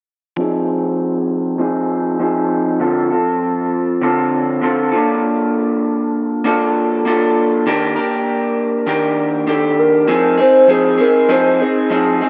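A slightly broken-up, lo-fi electric guitar sits up front from 0.4 s, its picked chords moving through Fm7, Dm7, Bbmaj7 and Ebmaj7 with lush chorus, vibrato and a filter sweep in this laid-back, sunny indie pop fragment with a swung sixteenth feel, until a hollow, woody, clarinet-like synth lead with slapback echo enters at 9.5 s to carry the melody, all set in a plate reverb with a dark production.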